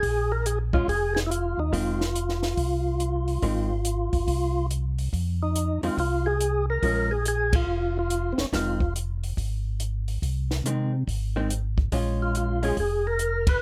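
Late-night and smoky, this swinging soul jazz organ trio fragment sets a fat, lightly overdriven, percussive tonewheel organ melody with key click, slow rotary speaker and plate reverb over a round, dark organ bass line, a dry cocktail drum kit with a punchy kick, high-tuned snare and shadowy cymbals, and a clean, picked hollow-body guitar comping from 0.7 seconds, as the band hits accents together at 7.5 and 13.4 seconds in a close, detailed room with light reverb.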